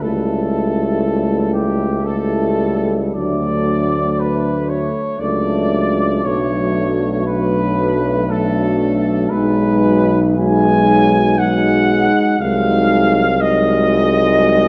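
A dark, roomy concert-hall sound with long reverberation surrounds this brief, tender passage, taken from a longer hymn-like classical piece for brass band in 3/4 with a rubato feel. Up front, a mellow trumpet section carries the melody, sounding slightly distant and touched with light vibrato. A clear tuba holds the bass line in the foreground with the same airy distance, while a French horn section sings a gentle second line further back. A trombone section and a solo trombone with a more pronounced vibrato fill the background with warm accompaniment. The harmony moves unhurriedly from A7/C# through D, Bm7 and G#m7/B before settling on G#7/B#, lending the 14.7-second passage a devout, softly glowing character.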